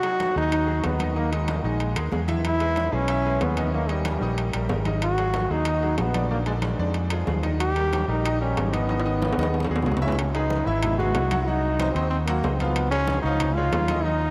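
This fiery, danceable salsa excerpt opens at once with a bright, punchy trombone carrying the melody up front, its vibrato tinged with digital delay, over a brilliant, worn grand piano accompaniment with short sustain. Ringing metal-shell timbales sit close while distant congas, played with soft hands, ring from the background, and a dark, round fingered electric bass joins at 0.4 seconds. The tune moves at 186 BPM in a straight 4/4, in G# minor, with chords such as G#m7, D#sus4, E6 and A#7 before a drum fill from 8.9 to 10.2 seconds leads into a new passage built on C#m7 and D#m13. The timbales stop at 14.0 seconds, just before the other parts close out. A huge ambient reverb soaks the whole mix, giving the energetic playing a dreamy, cavernous haze.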